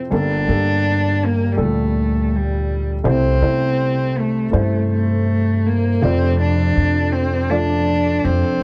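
Set in a straight, unhurried 4/4, this short cut from a longer acoustic folk-pop ballad feels nostalgic and intimate. A dark upright piano lays down the accompaniment, its mellow, slightly detuned tone carrying audible action noise that makes it feel close at hand. A single bowed cello carries the melody with a smooth, even line and gentle vibrato, while a pizzicato upright bass on gut strings adds a thumpy, woody pulse underneath. At 6.0 s, as the harmony settles onto F6, a concert harp enters in the background with ringing, fingerpicked arpeggios. The sound is dry and close, much like a 1970s studio session, with little reverb.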